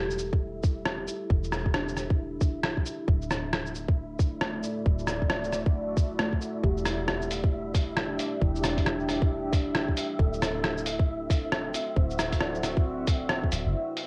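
Swung hi-hat, rim click and shaker from a muffled, sampler-style lo-fi kit ride over a tight, up-front electronic kick in this rainy, ghostly future garage fragment, where muted felt-like synth keys pump with sidechain, chorus and analog delay above a round, soft 808-style bass, a breathy wind-like noise texture drifts in the background, and a deep, detuned ambient pad enters at 3.8 seconds to hold moody sustained chords through Em7 and D9, with every part except the bass colored by cassette-tape warmth and a band accent at 13.3 seconds.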